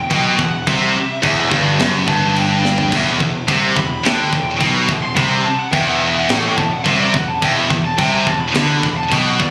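A small-room heavy metal recording, captured on a phone in the room and then given studio reverb and compression, cut from a longer piece and running about 9.5 seconds. At 107 BPM in a straight 4/4, it sits on E minor throughout, with a dark, relentless mood. Two bright, picked distorted guitars drive the low riff, one heavy, high-gain and up front, the other tight and distorted alongside it, while a growling picked electric bass with overdrive adds a direct, amped edge underneath. Over them a dark-toned lead guitar plays a solo for the whole span, its distortion trailed by digital delay. The acoustic drum kit sits in the background with a mid-forward, rolled-off sound, a tight kick and medium-tuned snare, crash and splash cymbals and toms, and it breaks into a fill at 2.6 seconds.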